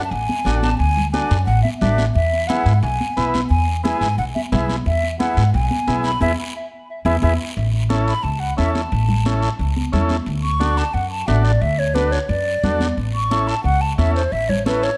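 A breathy, hollow silver concert flute with vibrato and tape echo carries the melody of this sunny, festive cumbia, cut from a longer piece. Beneath it sit a buzzy, overdriven vintage combo organ, a woody pizzicato upright bass up front, bright, high-tuned congas struck with hard hands, and a raspy guiro, the last two close and dry, all in light reverb. A band accent arrives at 6.2 s and a brief organ fill at 7.1 s leads into the flute solo from 7.6 s.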